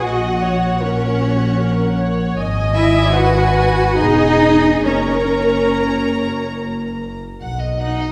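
Tender and serene, this brief excerpt from a slow romantic movement for string orchestra in 3/4 drifts with rubato at 68-79 BPM, as a smooth, vibrato-rich violin melody floats over a second violin line, bowed viola accompaniment with a smooth top that drops out at 7.0 seconds, and cello and up-front double bass sections anchoring the bass, all bathed in a lush scoring-stage reverb heard from further back in the room as the harmony moves from F#/A# through G#m7 and Emaj7 to rest on B.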